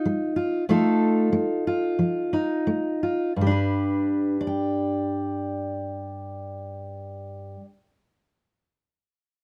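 Close, detailed miking and a light reverb put a dark, full-bodied fingerpicked steel-string acoustic guitar up front, with finger squeak audible on the strings in this short folk fragment cut from a longer piece. The mood is wistful and melancholic, in straight 4/4 around 86-94 BPM, tuned to A4 = 441 Hz. The guitar slows over the opening 3.3 seconds while moving from Ebadd9 to F7, then settles onto G as a new section begins, playing throughout until 7.7 seconds.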